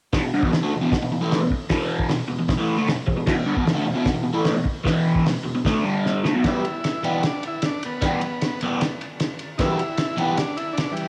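Gritty and swaggering, this garage rock excerpt opens with a crunchy, double-tracked overdriven guitar riff, touched with phaser, over a muffled, cloth-damped drum kit whose fat snare, tight kick and dark cymbals carry a saturated cassette-tape grit. After a drum fill at 6.1 seconds, a buzzy vintage combo organ enters at 6.4 seconds with a clean, lightly vibrato melody, while the guitar drops out at 10.4 seconds. The whole take has the light reverb and small-room feel of a home cassette recording.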